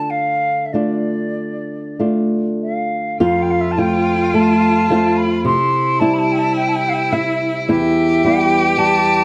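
Rubato and unhurried, this Celtic slow air drifts in 4/4 somewhere between 47 and 56 BPM, its pulse stretching and yielding in a mournful, longing mood. A wooden flute carries the melody from the start, its airy tone softened by gentle vibrato and a soft attack, set a little distant in the sound. Beneath it, an up-front flamenco guitar supplies the accompaniment, dark and boxy, thumb-plucked, with audible finger squeak as it moves through Dm, F, C and Em. At 3.2 seconds a single bowed cello enters with a focused, bright second line, adding its own vibrato to the flute's. Light reverb and close, detailed miking keep the textures intimate in this brief excerpt from a longer piece.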